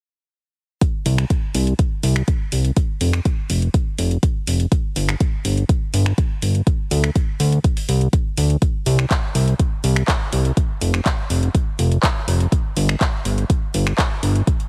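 Progressive house at 123 BPM in a straight 4/4, uplifting and euphoric, cut from a longer piece. A punchy, tape-tinged electronic kick sits up front from 0.8 seconds beside a layered pop kit of finger snaps, handclaps and metallic hi-hats, while a fat, detuned sawtooth bass with a fast attack and sustained, mellow body enters at 1.1 seconds, pumping against the sidechain in the F1 to D2 range. The sound is dry and heavily compressed, with a radio-like density.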